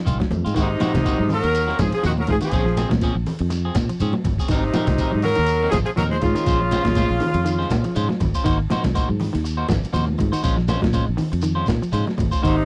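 A tight, up-front horn section carries the melody with light vibrato from 0.6 to 8.2 seconds, shadowed by a raspy tenor saxophone on a lower second line, and both return briefly at 12.5 seconds in this driving, hypnotic afrobeat cut at 121 BPM in Ab mixolydian with a 16th-note swing. Underneath, a round, dark fingered electric bass sits forward. A pitched-down, compressed sampler-style kit with a thumpy kick pushes the groove, while ringing high-tuned congas and a grainy, distant shekere add percussion in the background. Two clean, picked electric guitars, one playing arpeggios and the other scooped stabs, circle Ab9 and Bbm9 chords in a dry, close 1970s-style studio sound.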